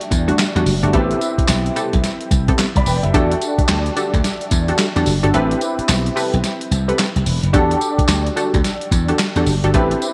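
Swung sixteenths at 109 BPM in 4/4 drive this slick, punchy new jack swing R&B cut in E minor, where a gritty, pitched-down boom bap drum kit with thumpy kick, handclaps, tambourine and gated reverb sits up front beside a bright, amped slap bass, while a detuned sawtooth polysynth comp with filter pluck, chorus and digital delay stabs over an intimate concert grand piano with audible action noise and long sustain, all cycling through Em11 and Am9 in a bright 1980s-style digital mix, with the kick dropping out from 5.3 to 7.5 seconds.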